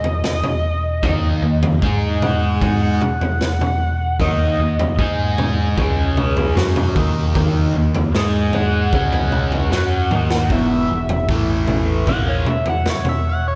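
Psychedelic rock with a kaleidoscopic, trippy mood, this excerpt cut from a longer piece opens with a screaming, guitar-like synth lead soloing through distortion, phaser and diffuse ambient delay over a boomy, saturated garage drum kit, joined at 1.0 s by bright, double-tracked fuzz guitar and a round, dark dub bass sitting in the background, with a drum fill at 9.7 s, all soaked in a lush hall reverb for a dreamy mix.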